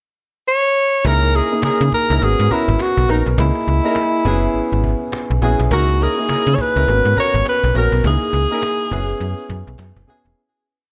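Slick and bouncy, this short new jack swing piece in C# dorian moves at 103 BPM with a 60% swing on the sixteenths. A warm, close-miked tenor saxophone opens the pickup bar at 0.5 seconds and stays up front with a motif-based jazz melody of call phrases, sung with vibrato and a soft attack. From 1.0 seconds the band arrives: a snappy FM bass with a metallic, fast attack drives a bouncy swung synth-funk line with muted ghost notes, while a dark, mellow concert grand pushes rootless chords with grace notes through changes like C#m69, G#m11 and F#9sus4. Behind them, a dark horn section with a smooth top and light vibrato adds short syncopated jazz stabs, and a woody cajon plays a hard-swung drum-machine-style beat with faint snares layered with clap. A grainy egg shaker slips in at 5.7 seconds with sixteenths in the background. Light reverb and a small room ambience frame the parts as the piece fades out from 8.0 seconds.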